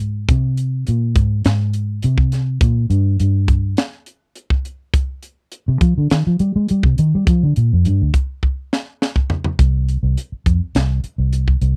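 Electric jazz fusion with a nocturnal, intense mood, cut from a longer piece, in which a dark, round, foam-muted vintage electric bass plays a fingered solo up front over a tight funk drum kit with a high-tuned snare and punchy kick until 9.6 seconds, a drum fill arriving at 8.4 seconds, all captured in a dry, close 1970s-style studio sound.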